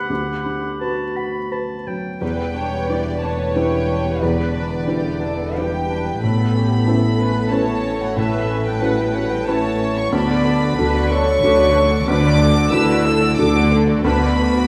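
Cinematic and longing at 91 BPM in a rubato 3/4 in E dorian, this excerpt opens with a felt-muted upright piano, mellow with audible action noise, beneath brief woodwind lines from a bright oboe, an airy straight-toned flute and a punchy clarinet, before strings enter at 2.2 seconds, where a soft, floating sul tasto violin section carries the melody over a darker, lush second violin line, rich violas, smooth cellos, dark double basses and background French horns holding sustained chords, all in a church-like hall reverb through Em7, Aadd9 and D.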